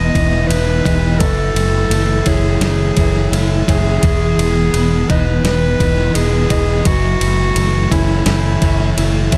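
Shoegaze-tinged dream pop rock at 85 BPM in 4/4, this blissful, dreamy excerpt floats on Emaj7 and F#m9 chords as a bright, soft-attack clarinet sings the melody through digital delay over shimmering, boxy twelve-string acoustic arpeggios, a thick fuzz guitar riff, a compressed clean twelve-string electric riff bathed in reverse reverb, a round, up-front fingered bass, and a crisp, overdriven 8-bit drum machine with thumpy kick, snare and ride entering at 0.1 seconds, all in a dark, close production.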